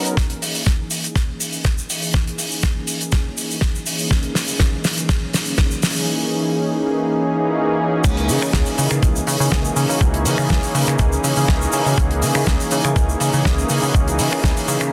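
A detuned, smooth sawtooth pad with chorus, tape echo and sidechain pumping sits up front in this groovy, cosmic nu-disco piece at 122 BPM in C# dorian, its filter sweeping through a build-up on a C#m69 chord while a dry, airy 70s drum kit with a fat snare, dark cymbals, finger snaps and shaker plays a fill and a gritty, thumpy electronic kick pushes up front alongside it, until the drop at 8.0 seconds brings in a glossy, retro chorused synth bass with ring modulation and a plucky filter, the whole mix set in a lush hall reverb and a dense, heavily limited master.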